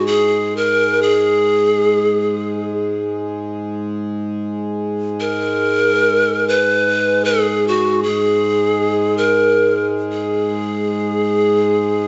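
In free time, this haunting, spacious world meditation piece in G# minor, cut from a longer work, sets a breathy, bright bamboo pan flute melody with vibrato, a soft, chiffy attack and lifted highs up front over a reedy, mellow hand-pumped harmonium drone that also sits forward, both sounding through all 12.1 seconds inside a wet recital-hall reverb with a top end that stops at 7.9 kHz.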